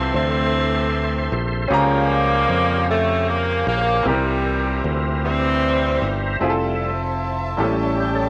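A slow, straight 6/8 gospel groove carries this soulful, reverent fragment from a longer piece. A tight, clear saxophone section sings the melody up front over brilliant, worn grand piano, a growly, punchy fingered electric bass and a lightly overdriven tonewheel organ with slow rotary speaker and chorus vibrato glowing in the background. At 6.4 s the saxophones stop and the organ takes a solo, while a dark studio string section enters with expressive vibrato and portamento, all set in a moderate echo chamber reverb.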